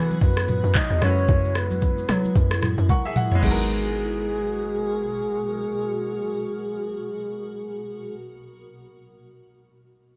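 Opening on the drop, this deep, hypnotic amapiano piece at 112 BPM in G# minor sets a hollow, bouncy log drum bass and a round, dark synth lead with chorus and delay against clear baby grand piano accompaniment and a blurred granular pad pumping beneath, while a soft, overdriven R&B kit and ringing congas drive the groove until piano and drum fills leading up to 3.4 s carry it into a new section on G#m9, the kit stopping at 3.6 s.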